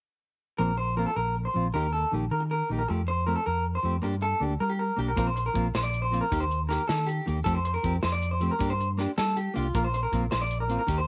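A sunny, danceable highlife guitar band fragment in 12/8 at 105 BPM in Bb major opens at 0.6 seconds with a slightly broken-up, compressed electric guitar picking up-front arpeggios with slapback echo, a dark, clean, fingered electric guitar with subtle chorus playing accompaniment, and a round, amped fingered electric bass, over a repeating Bbsus2, Eb, Fadd9, Gm progression. At 5.2 seconds a soul drum kit joins with hi-hat, kick and snare, sounding distant and roomy, with a medium-tuned snare, a tight kick and a rolled-off top. The mix sits in light studio reverb.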